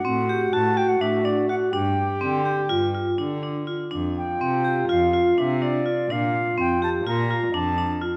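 Contemporary chamber music in a restless, hypnotic 9/8, this short excerpt sets a pure, straight-toned concert flute melody over a mellow solo French horn second line, metallic, ringing vibraphone arpeggios struck with hard mallets and carrying a slow motor vibrato, and a close, nasal bowed cello bass played sul tasto, all bathed in a moderate scoring-stage reverb as the harmony moves from D/A through G5 and F5 to Bbmaj7.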